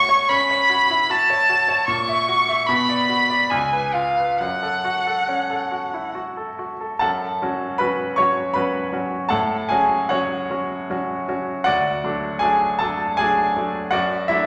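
In a rubato triple metre, this elegiac, melancholic romantic classical fragment pairs a rich, smooth, bowed violin with vibrato, which carries the melody until 6.1 seconds, with a bright, polished baby grand piano accompaniment that continues alone to 14.5 seconds inside a wet recital hall reverb.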